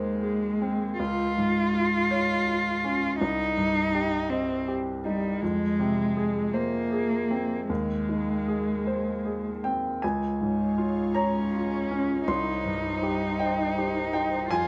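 A rubato 6/8 sways at 53 BPM in dotted quarters through this intimate, hopeful neoclassical passage for piano and strings, cut from a longer piece and moving through chords from Ab/Eb to Db, Cm and Fm. An up-front grand piano with a clear, smooth, vintage tone carries the accompaniment across a broad range, while a single bowed cello, warm, focused and full of vibrato with a smooth top, sings a second line alongside it. At 10.0 s a soft, airy, breathy pad enters with slow-attack sustained chords, its detuned sawtooth and triangle tones, noise layer, moving notch and chorus giving it a hazy glow, all heard through close, detailed microphones in light reverb.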